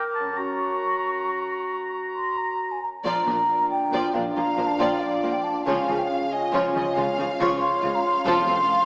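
This short cinematic excerpt is bathed in the wet reverb of a concert hall, yet it comes through with a small-speaker sound, and its mood is adventurous and triumphant, moving at 92 BPM in 12/8. It opens with a build-up, where an airy, hollow concert flute carries a second line over ringing, fingerpicked concert harp arpeggios, while a distant, roomy clarinet, up front, and a solo oboe with light vibrato add brief lines that end by 2.8 seconds. At 3.0 seconds the full strings arrive: a smooth, even violin section takes the melody, a lush viola section fills in the accompaniment behind it, and an intense cello section and a focused double bass section anchor the low end. A mellow French horn section joins with sustained chords, and a second, lush violin section with fuller vibrato adds a higher line from 4.4 seconds. The harmony moves from Gb through Bb and Db to F, and articulate timpani struck with hard mallets enter at 8.2 seconds to punctuate the close.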